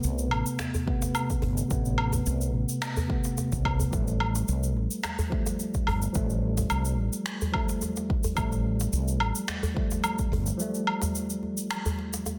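A round, punchy fretless electric bass with tube saturation and sidechain pumping anchors this earthy, hypnotic organic downtempo excerpt at 108 BPM with a light 16th-note swing, moving from Amadd9 to Fadd9 under a mellow, clean tine electric piano with delay and pumping, tape-colored electronic shaker, woodblock and finger snaps with a softly clipped snare, a tight, cracking djembe with metal rattles from 0.3 s, a deep electronic kick from 0.9 s to 10.3 s, and a barely audible, ringing quartz singing bowl, set in a moderate recital hall reverb with a dense, heavily limited master.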